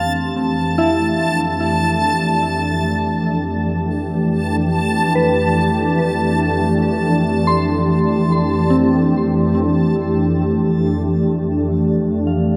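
Free-time ambient excerpt in F lydian with a serene, peaceful mood, where an up-front detuned sawtooth analog pad with chorus sustains Fmaj7 and Cadd9/F chords beneath gentle, warbling vintage FM bell arpeggios carrying chorus and delay; a reversed, dreamy granular texture glows bright on a high A until 9.7 s, when the harmony settles on F and the bell fades in, all inside a vast, echoing cathedral reverb.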